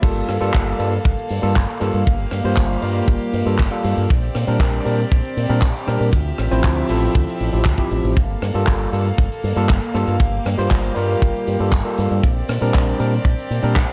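A steady, straight 4/4 pulse at 118 BPM drives this sleek, groovy nu-disco excerpt in G dorian, cut from a longer piece and sitting in a drop for its full 13.9 seconds. A tight, up-front acoustic kick anchors the groove, joined by a mid-forward funk kit of hi-hat, rim click, handclaps, cabasa and crash cymbal in a small room. A fingered electric bass with an envelope filter sits warm, direct and up front between G1 and Bb2. A barky, overdriven tine electric piano played through a combo amp carries the accompaniment with a gritty edge and a trail of delay. Behind it, a chamber string section holds soft-attack sul tasto chords with a pure, floating quality, pumping under sidechain. The harmony moves from Gm9 through Bb69 and Dm11 before returning to Gm9 at 8.2 seconds, all in light reverb with small room ambience.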